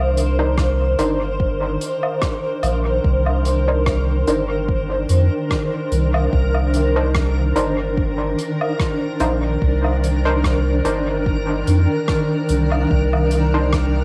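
A blurred, granular cloud pad sits up front, holding a Cm9 chord through its built-in reverb and cassette tape haze, while a round, soft dub sub bass anchors the bottom of this deep, spacious ambient dub excerpt at 73 BPM with a lightly swung 4/4 feel. A muted, chorused chord stab with dub echo, a soft-mallet kit of hi-hat, rim click and woodblock in a big-room sound, and a tape-warm electronic kick all enter within the first second and carry through nearly to the end. Behind them, a reversed, dreamy texture swells on a single bright Bb4, giving the home cassette recording a drifting, hazy glow.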